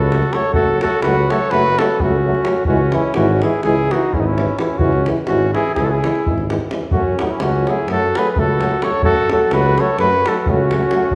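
A mellow cornet leads this festive, exuberant Balkan brass band piece from the start, its smooth top and light vibrato sitting up front in a classically styled melody. It is cut from a longer piece and moves at a brisk 255 BPM in eighths in a straight 9/8, with the harmony shifting from F# minor to C# minor and back to F# minor at 6.9 seconds. A trumpet shades the cornet with a second line in a similarly gentle, vibrato-touched voice, while a tuba with a soft attack carries the bass. Two euphoniums hold up the accompaniment in the background: one is warm, and the other sounds distant and roomy. A tight, vintage davul with a band-limited, acoustic tone drives the percussion, and the whole band rings in a wet recital hall reverb.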